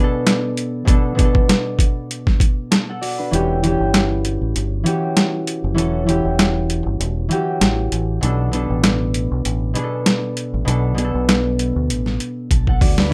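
A rough home-demo sound in a small room frames this reflective, gritty boom-bap hip-hop excerpt at 98 BPM in a lightly swung 4/4, where a mellow, ringing fingerpicked concert harp colored by cassette tape and plate reverb moves from Bm7 to Em69 and back over an overdriven, sampler-style drum kit with a thumpy kick and medium-tuned snare, until at 3.3 seconds a dark, round, punchy fingered electric bass enters as the kick drops out, with a drum fill arriving at 12.5 seconds.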